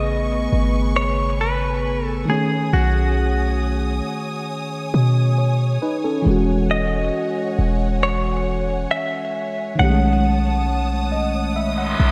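A deep, boomy 808-style bass sits up front in this sensual, late-night contemporary R&B excerpt, beneath a round, warbling FM electric piano with chorus that carries the accompaniment and adds a fill from 10.7 seconds. A bright, twangy clean electric guitar plays the melody through delay, while a lush bowed string section holds sustained chords with woody vibrato. The dreamy mix is soaked in hall reverb, and an electronic reverse cymbal enters at 11.7 seconds.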